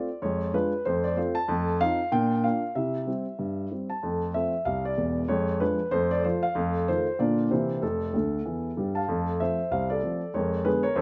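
A swinging 4/4 pulse drives this short, playful stride piano passage, cut from a longer piece. A solo concert grand carries everything from start to finish, its tone warm and up front with a deep bass reaching down to E1 and a treble climbing to A5. The harmony circles through bright major chords, a diminished colour, and a dominant seventh that pushes toward the subdominant before turning home again. Near 8.1 seconds the piano slips in a brief fill, and by 9.1 seconds the opening strain starts over. The sound is dry, with little reverb, a dulled top end, and an open-air feel free of room sound.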